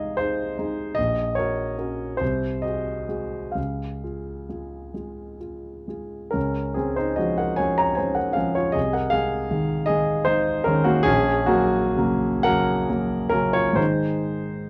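Nostalgic and tender, this romantic nocturne for solo piano moves in a slow, rubato 12/8 at around 40-55 BPM in Db major, tuned slightly below standard pitch. A single grand piano carries the whole piece, sounding intimate and up front with audible action noise, ranging from Bb1 to Bb5 under light reverb in a dark production. Cut from a longer piece, it states its opening phrase twice, the second time beginning at 6.4 s, with gentle inversions such as Ab/C and Gb/Bb settling onto Db.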